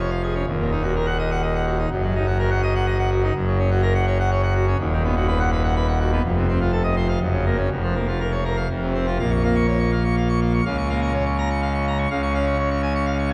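A full pipe organ with brilliant mixtures and baroque voicing sits up front in this stormy, dramatic classical toccata at 124 BPM in 3/4, settling into Bb minor from 3.4 seconds and spanning Eb1 to Db6 under a dark production and a church reverb lasting 2.9 seconds, a short excerpt cut from a longer piece.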